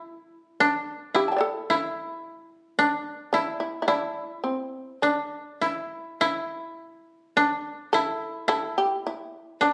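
Unhurried and rubato in 2/4 at about 50-56 BPM, this calm, austere snippet of Japanese traditional chamber music in D suspended pentatonic opens with a dry, woody koto played with fingerpicks on a narrow second line, joined at 1.2 seconds by a buzzing, percussive, powerful fretless shamisen carrying the melody up front, before moving into a new section at 6.2 seconds, all captured on a phone in a recital hall with a moderate, roomy reverb.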